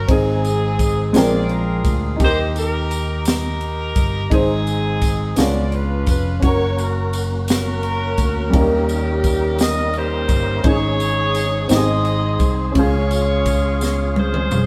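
In a slow, straight 6/8 at 57 BPM in Db major, this hopeful, jubilant gospel excerpt sets a clear, tight horn section singing the melody over a baby grand piano with audible action noise, a round, up-front fingered electric bass, a crisp fusion drum kit with a punchy kick and high-tuned snare that closes on a fill at 13.8 seconds, and a jingly tambourine in the background, while a lightly overdriven tonewheel organ with slow rotary speaker and chorus vibrato joins at 6.4 seconds with sustained chords, the band playing live together in a stone room's moderate reverb.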